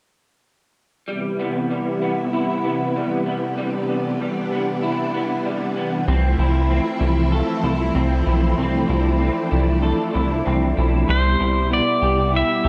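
In a straight 4/4, this floating, dreamy dream pop excerpt opens at 1.1 seconds with shimmering, vintage string-machine violins sustaining Cmaj7 and then Fmaj7 chords under slightly broken-up, lo-fi arpeggios from an electric guitar through a small old amp, both coloured by ensemble chorus and the guitar also carrying digital delay, before a glossy, nasal chorused synth bass enters at 6.1 seconds and a bright, twangy pedal steel guitar glides in at 11.1 seconds with a clean, delayed slide melody, the whole mix set in a lush hall reverb.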